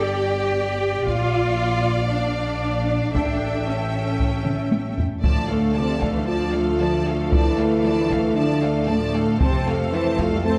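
A taiko ensemble struck with hard sticks drives this heroic, relentless stretch of epic orchestral film score, entering at 1.1 seconds and carrying a steady 115 BPM in straight 4/4. A full string body plays from the start: a lush, focused violin section sings the high melody over a second, more distant and intense violin line, while a smooth viola section sits in the background. Below them, clear cellos and rich, even double basses anchor the low end, both bowed with vibrato. A drum fill at 4.5 seconds pushes into the second half, where the music settles into D minor at 5.2 seconds and a mellow, soft-attacked French horn section joins tight trombones on sustained chords. The whole ensemble blooms in a wet scoring-stage reverb, and the excerpt is cut from a longer piece.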